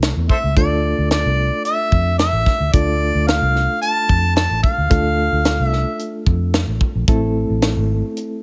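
A straight-eighth soul blues groove in 4/4 sets a smoky, mournful mood, carried by a tight, up-front acoustic funk kit with a high-tuned snare and a dark, round, foam-muted electric bass. Over a reedy electric piano shimmering with fast tremolo, a mellow, overdriven harmonica enters at 0.3 seconds for a jazz-style solo full of tongue slaps and scooped notes, ending at 6.2 seconds. Light reverb and small room ambience frame this brief cut from a longer piece.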